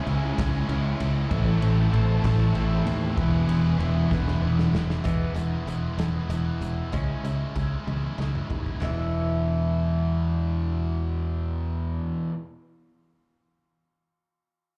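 In a slow, straight 6/8 at 64 BPM, this restless, bittersweet quiet-loud alternative rock excerpt in E major moves from C#m through Am to E, heard live through a club PA. A punchy, up-front fretless bass anchors a bright, overdriven, double-tracked electric guitar riff with slapback echo. A very quiet fuzz guitar also plays a riff, and a dark, veiled con sordino string section holds sustained chords in the background; both stop at 5.0 s. A loose indie kit with a tight kick and rolled-off top sits back in the mix and adds fills. From 5.0 s a boxy, swing-style acoustic guitar picks arpeggios with slapback echo, and the drums drop out at 9.0 s.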